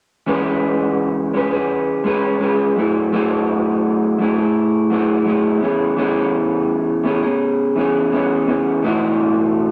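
Hazy and laid-back, this short indie pop excerpt moves at an easy 84 BPM in E major, with a lone electric guitar through a small old amp playing from 0.3 to 9.7 seconds. The picked guitar sits up front with a dark, slightly broken-up, lo-fi tone, colored by lush chorus and vibrato as it moves through E6, F#m9 and back to E6 before landing on B7sus4. A moderate spring reverb and digital ambience surround it, and the worn cassette-tape quality adds a warbly pitch drift to the whole sound.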